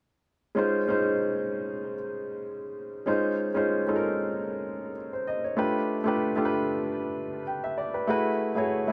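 Lush and warm, this soul excerpt at 96 BPM features a baby grand piano playing solo from 0.5 s to 8.9 s, with a gentle 16th-note swing and tuning set to A4 = 435 Hz. The piano sits up front with a polished, present tone and short sustain, colored by tape echo and a moderate echo-chamber reverb. Its chords move from Dbmaj9 through G9 at 5.6 s to Gbm11 at 8.1 s.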